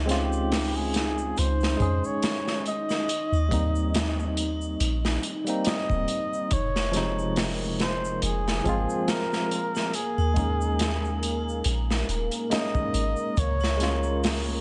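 Hypnotic and smoky, this trip hop piece in F minor moves at 70 BPM with a 16th-note swing, as a breathy, bucket-muted trumpet carries a veiled, vibrato-laced melody through vintage 12-bit sampler grit and tape echo over a barky tine electric piano with overdrive and tremolo, a round, soft 808-style bass up front, crunchy, saturated breakbeat drums, a dark, detuned sawtooth analog pad with chorus in the background, and a faint egg shaker and triangle, all in light studio reverb.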